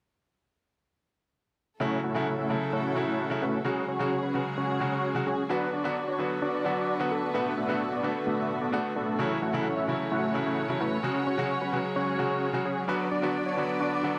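A dense, compressed supersaw leads this euphoric, anthemic EDM excerpt at 130 BPM in A major, its huge detuned unison riff softened by a low-pass filter and thrown into dub echo, with vibrato and a sub octave thickening it up front. A bright baby grand piano, brilliant and intimate with audible action noise and short sustain, plays accompaniment through its own dub echo, while a chamber string section holds soft-attack sul tasto chords with light vibrato. All three enter together at 1.8 seconds and cycle through A6, F#sus2, Bm and D6 until 14.2 seconds, set in a lush hall reverb.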